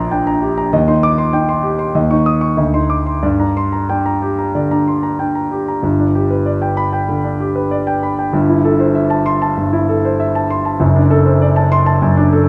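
A solo grand piano opens in G minor with a passionate, stormy virtuoso study, its present, polished tone sitting up front and moving with rubato around 96 BPM in 4/4, spanning F#1 to D#6. At 5.8 s the harmony turns to G major, and the music continues through to the end at 12.5 s. A moderate recital-hall reverb and a dark, warm production surround this short passage cut from a longer piece.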